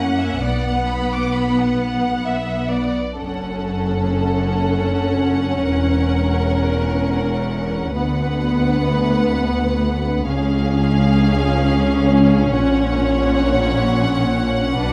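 Over a vinyl crackle and light reverb, a string orchestra begins this elegiac, melancholic slow movement in 6/8 with free rubato timing, every section bowing with vibrato from the opening moment. Focused violins carry a narrow-ranged melody while a second, expressive violin line with a soft attack spans a broader range, and close, lush violas fill in the accompaniment. Beneath them, rich and even cellos sit distant in the background while the double basses stand up front with a warm tone, together grounding the bass as the music moves into a new section at 3.2 s.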